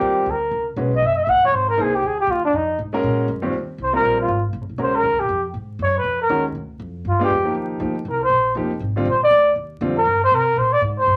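Vinyl crackle and a small, reverberant room frame this playful, swinging excerpt of small-group jazz in Eb major, moving at a brisk 239 BPM with a gentle swing feel. A bucket-muted trumpet carries the melody up front, veiled and breathy with light vibrato, soft attacks and scooped notes, and from 3.5 s it takes an intimate, whispered solo over bop-flavoured changes that include rootless dominants and altered chords. A clear grand piano, its action noise audible, comps until 9.9 s, while a woody pizzicato upright bass plays beneath the trumpet through to the end.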